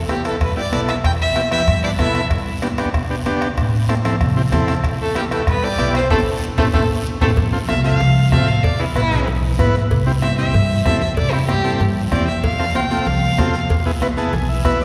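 Awash in a long church reverb, this fiery, driving cumbia excerpt at 190 BPM rides on woody pizzicato upright bass, a buzzy vintage combo organ, a soft-beater bombo, ringing high-tuned congas in the background, a raspy guiro and very quiet timbales and cowbell. A rich, biting bowed violin sits up front with vibrato to carry the melody, while a clear, pop-style trumpet with scooped notes adds a second line in the background, briefly at 1.8 seconds and again between 5.0 and 7.3 seconds. After a band accent and drum fill, the violin takes a solo from 7.4 seconds, and the organ closes with a fill at 14.0 seconds.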